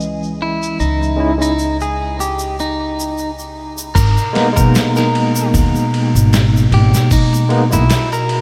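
A barky tine electric piano with tremolo and tape echo, a warbling, nostalgic pad with chorus, a woody pizzicato upright bass and a close acoustic tube shaker open this melancholic, hypnotic trip hop excerpt together at 76 BPM in G# harmonic minor, all over a C#madd9 chord. At 0.4 s a bright, picked clean electric guitar takes the melody, roughened by 12-bit sampler grit and tape echo. At 4.0 s the harmony moves to G#madd9 as a gritty, overdriven soul sampler-style drum kit arrives with a thumpy kick, snare, hi-hat, ride and crash, inside a dreamy, low-passed mix soaked in long ambient reverb.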